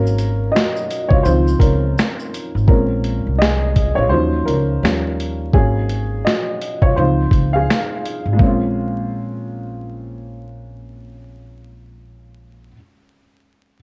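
Swung sixteenths in 4/4 drive this nostalgic, melancholic lo-fi hip hop fragment, where a gritty, compressed boom bap kit of thumpy kick, high-tuned snare, hi-hat, shaker and finger snaps sits up front until 8.6 seconds, a growly, woody pizzicato upright bass anchors the low end until 12.7 seconds, and a dark, boxy, slightly detuned upright piano, dulled by cassette tape and low-pass filtering with audible action noise, takes a solo through the opening section and carries on alone until 13.8 seconds over jazzy seventh chords, all bathed in light reverb, vinyl crackle and the warbling pitch drift of worn old tape.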